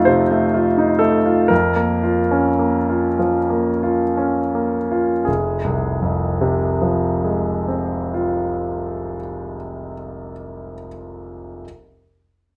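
This romantic classical character piece for solo piano is a short fragment of a longer work, bittersweet and passionate in mood, moving in a lilting compound metre with free, flexible rubato. A single concert grand carries everything, ranging from deep, resonant bass up into its middle-upper register, with a polished, up-front tone and long sustain. The mechanical action noise sits audibly in the close, intimate sound, set inside a moderate studio reverb. The opening phrase gradually slows as it moves from a dominant-seventh colour into a minor chord over an F bass. At 5.3 seconds a new passage begins on a settled minor chord, and the fragment breaks off at 11.7 seconds.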